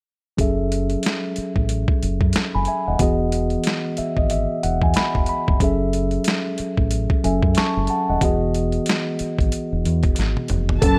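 R&B and neo-soul at 92 BPM in E major, relaxed and unhurried with a 16th-note swing, cut from a longer piece where a mellow, clean tine electric piano sits up front with a round, punchy fingered bass and an up-front, gritty, pitched-down boom bap drum kit with a thumpy kick and medium-tuned snare. The chords move between F#m7 and Emaj7, with an electric piano fill from 3.6 to 5.6 seconds and a drum fill just before a lush, bowed string section with vibrato and portamento enters at 10.8 seconds. Light reverb and digital ambience give the mix a soft sense of space.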